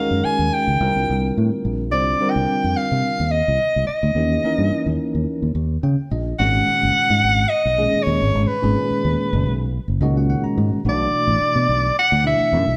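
A close-miked soprano saxophone carries the solo melody with a bright, vibrato-laden jazz tone, while a clean, bell-like tine electric piano comps beneath it in this driving, nocturnal electric jazz fusion excerpt, set in 4/4 with a light sixteenth-note swing. A punchy, up-front fingered electric bass joins at 0.1 s. The piano adds fills near the close of the first section at 5.6 s and again at 9.7 s, and the band plays live in a stone room whose reverb lingers over lush minor eleventh, altered dominant and minor ninth harmonies.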